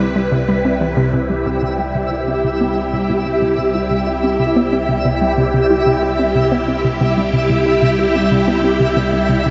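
Expansive and luminous, this ambient, sequencer-driven space music excerpt at 92 BPM in C major sets a swirling, vintage phased string machine holding sustained chords against a hollow, bouncy square pluck riff treated with chorus, phaser and analog delay, while a twinkling granular texture with an octave-up shimmer enters at 1.4 seconds, all suspended in a vast, echoing space with a long shimmer-soaked reverb.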